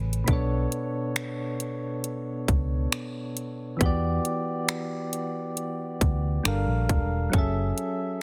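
Mellow electric-piano-like synth keys shimmer with chorus and tremolo over Bm9, Em7, Gm9 and F#m9 chords in this dreamy, romantic contemporary R&B fragment from a longer piece, set against a dark, foam-muted vintage fingered bass and an up-front trap kit of finger snaps, metallic hi-hats and a hard-clipped kick, all in light digital reverb under a dense, heavily limited modern master.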